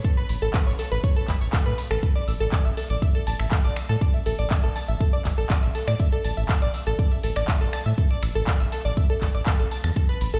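Progressive house at 121 BPM with a hopeful, expansive mood, built on an Aadd9 chord that moves to Dsus2/A at 2.0 seconds in this short excerpt cut from a longer piece. A glassy, crystalline wavetable pluck plays bright arpeggios high in the register, colored by chorus, delay, cassette tape and sidechain pumping, while a round, deep analog bass enters at 0.3 seconds and pumps with the sidechain. An up-front, punchy electronic kick anchors the groove beneath a quieter pop kit of finger snaps, handclaps, metallic hi-hats and ride cymbal, all heard as if played through a big sound system in a bare stone room.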